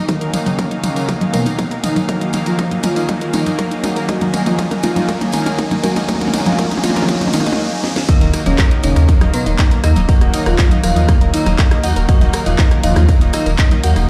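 Heard through a big sound system in a bare stone room with a moderate concert-hall reverb, this hypnotic, dramatic melodic techno excerpt builds with a punchy, tape-toned electronic kick up front, a house kit with a cracking snare, congas, handclaps and toms, a jingly distant tambourine, a background riser and a filter sweep on an analog polysynth, all beneath a round synth-brass melody, bold brassy pad stabs, bright sidechain-pumped unison pluck arpeggios with digital delay, clear symphonic string chords and a barely audible swarming drone, until a short break gives way at 8.1 seconds to a drop where a menacing detuned saw bass, an eerie inharmonic synth-bell second line with tremolo and a very quiet big-room rock kit join in.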